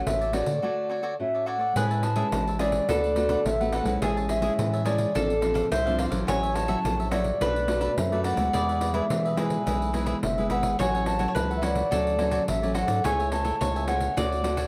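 A moderate studio ambience frames this lively, playful samba and choro fragment in A major at 106 BPM, a straight 4/4 passage cut from a longer piece. A reedy baroque flute carries the tongued, vibrato-touched melody over fingerpicked, full-bodied nylon-string guitar, crisp picked cavaquinho, jingly pandeiro and a round analog bass whose deep, mellow tone blends sine with wave-folded square waves. From 1.8 s a bright, woody mandolin adds a double-stringed second line as the harmony moves through major-seventh and sixth chords, Bm7 and E before settling back on Dmaj7.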